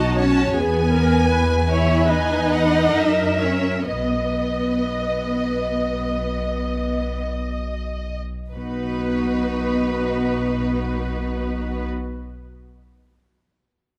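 Bowed cellos carry the most presence in this slow, lyrical romantic movement for string orchestra in B major, singing with expressive vibrato and gliding portamento over rich, up-front double basses. Above them, a lush, distant violin section takes the melody with a soft attack, while a second violin section adds an intimate line in the background and the violas supply smooth, even accompaniment. The 4/4 pulse moves freely with rubato between 46 and 79 BPM, slowing through the first 8.5 seconds of this fragment from a longer piece, all captured by close, detailed microphones in light reverb.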